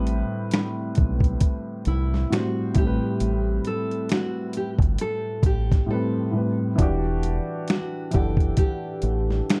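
This nostalgic, reflective lo-fi hip hop excerpt opens on a dark, woody upright piano, mellow and slightly detuned with a vintage cassette-tape haze and a low-pass filter. It sits over a round, deep dub fingered electric bass and a gritty, compressed sampler-style drum kit with a thumpy kick, medium-tuned snare, hi-hat and finger snaps. The tempo is a slow 67 BPM in 4/4 with a lazy swing on the sixteenths, resting on an Am9 chord in A dorian. At 1.9 seconds a full-bodied, fingerpicked nylon-string guitar enters quietly with the melody, softened by a low-pass filter and an analog delay. The drums drop out at 5.9 seconds and return as the harmony shifts to Em9 at 6.8 seconds. The dark production is wrapped in a moderate studio reverb, with the piano, bass and drums placed up front.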